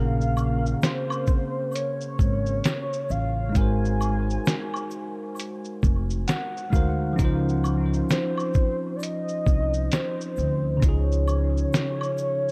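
A lightly reverberant, echo-heavy mix with a cassette-tape haze frames this mellow, cosy lo-fi hip hop passage at 66 BPM in Db major, swung on the 16ths over Bbm9, Ab7 and Dbmaj9, where a velvety, sub-octave synth lead with chorus and dub echo sings the melody above a bright, bell-like tine electric piano (tape-tinged and echoed, with a fill from 5.8 to 7.2 seconds), a woody pizzicato upright bass that drops out at 11.6 seconds, a muffled, pitched-down sampler drum kit with a thumpy kick and fat snare up front, and an egg shaker and woodblock echoing quietly in the background, all cut from a longer piece.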